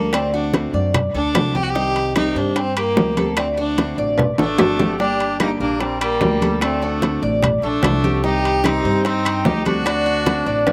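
Recorded outdoors with little reverb, this danceable Cuban son and guajira excerpt moves at 148 BPM: an up-front, earthy bowed violin with light vibrato leads over D7, Cm and Gm changes. It is joined by a fingerpicked nylon-string guitar with audible finger squeak and a metallic, double-strung Cuban tres playing arpeggios, all three touched with slapback echo. Underneath are dark pizzicato upright bass, ringing congas, round low-tuned bongos, woody claves and metal-shelled timbales, and a drum fill from 4.2 s ushers in a punchy, distant trumpet second line, also echoed, at 4.4 s.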